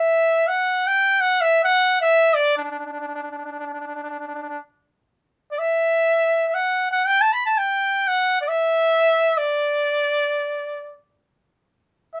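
Arabic music in free time and D maqam ajam, this short cut from a longer piece features a solo trumpet with a clear, classical tone and light vibrato, sitting up front yet sounding distant and roomy in moderate studio reverb, with a festive, stately mood across its 12.2 seconds in a rough home demo mix.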